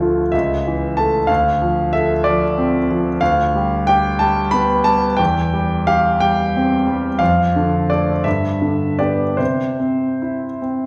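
A bright, brilliant concert grand opens this lyrical, hopeful fragment of a romantic character piece for solo piano, unfolding in 6/8 with free, breathing rubato. Its harmony moves from A/C# through Dm7 and G7/D toward a settled C chord at 9.4 seconds, while the deep bass and long sustain give the line a polished glow. The instrument sits up front and intimate, its action noise plainly audible, yet it is wrapped in the wet reverb of a recital hall.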